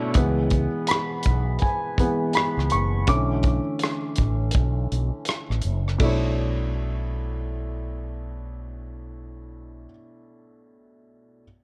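At 82 BPM in 4/4 with swung sixteenths, this smooth, introspective neo-soul R&B fragment in B dorian drifts over C#m7 and Bm11 chords, slightly below standard pitch. The intimate grand piano, with audible action noise and deep bass, takes a solo through the first section, over a dark-cymbaled soul kit of tight kick, hi-hat, ride and rim click, and a round, punchy fretless bass with ensemble chorus. The drums stop at 6.2 seconds and the bass at 9.9 seconds, leaving the piano until 11.4 seconds, all under light studio reverb and the worn, warbling pitch drift of old cassette tape.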